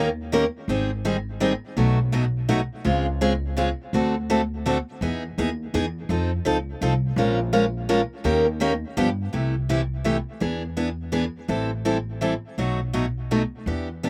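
The recording is dry and open-air, with barely any reverb or room sound. This lively jazz manouche excerpt swings at 166 BPM in 3/4, with a lilting swing on the eighth notes. A picked steel-string acoustic guitar plays accompaniment, sitting up front with a bright, fresh-stringed tone, audible finger squeaks and a touch of slapback echo. Beneath it, an upright bass supplies the low end with woody pizzicato notes. The opening section moves through a restless run of seventh and major-seventh chords from Abmaj7 through Dbmaj7, Emaj7 and Bbm7. Around 9.3 s the harmony settles into C major on a C6 chord, then moves through E7 and Am7 to B7.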